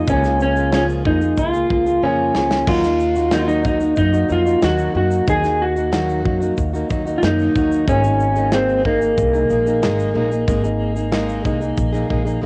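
Acoustic pop with a heartfelt, sunny mood, this short cut from a longer piece moves at an easy, straight pace in four. An electric slide guitar carries the melody up front, its slightly broken-up, compressed tone sitting atop a full-bodied fingerpicked jumbo steel-string acoustic guitar that supplies the accompaniment. A pizzicato upright bass with steel strings adds a woody, thumpy low end, while a modern studio drum kit with a punchy kick, medium-tuned snare, shaker and crash cymbal keeps time, marked by a drum fill from 2.0 to 2.7 seconds. The harmony moves from Db6 to Ebm and then to Absus2 at 7.9 seconds. The guitars and drums carry the coloring of cassette tape, and the whole track has the intimate feel of a home recording, with light reverb and small room ambience rounding off its dulled top end.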